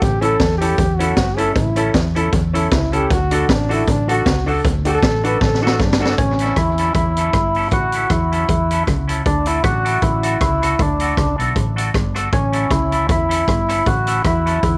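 A bright, punchy close-miked trombone solo with scooped notes opens this upbeat, bouncy ska excerpt in A mixolydian at 156 BPM, backed by woody upright piano stabs, a twangy clean guitar with tape echo, a dark, round hollow-body bass and a street-band kit with a high-tuned snare and boomy kick, until a drum fill hands the melody at 6.2 s to a lightly overdriven tonewheel organ with key click and third-harmonic percussion.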